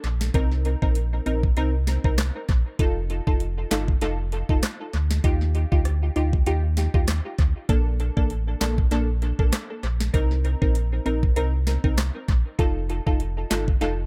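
A swung, bouncy dancehall groove drives this sunny section cut from a longer piece, built on an up-front electronic afro-pop kit with a knocking kick, sharp snare, metallic hi-hat, handclaps and rim clicks, given a large-room character and tape echo. Underneath sits a deep, full sub bass with an octave layer, sine-and-triangle in tone with a fast attack and sustained notes. A crisp, detuned wavetable chord stab with a filter pluck and short decay enters at 0.3 seconds, cycling through Cm7, F7, Ebadd9 and Bbmaj7 under its own tape echo in a dry, echo-heavy mix.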